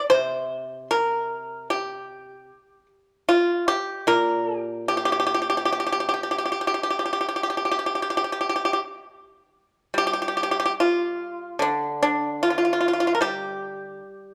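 This Chinese traditional recording of solo plucked strings has an elegant, longing mood, moving in a rubato 4/4 feel around 74 BPM in the G yu mode. A single pipa carries everything from 0.0 to 14.3 seconds, played with fingerpicks across a range from Bb2 to C5. Its acoustic tone is bright and percussive, and it sits dry and up front in the mix. A moderate recital-hall reverb gives the room a sense of space, while the overall production leans dark and warm. The passage opens with one section, then shifts into a new one at 10.0 seconds before this brief cut from a longer piece ends.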